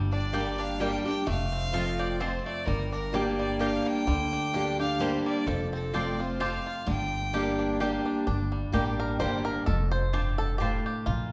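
Bathed in a wet recital-hall reverb, this haunting, lonesome bluegrass excerpt in G minor moves at 129 BPM in a swung 3/4, with a full-bodied picked acoustic guitar and a thumpy, woody upright bass up front, a clear, biting fiddle with light vibrato carrying the melody until 7.8 seconds, a mellow mandolin adding stabs, and a twangy fingerpicked banjo that takes a solo from 8.3 seconds to the close at 11.3.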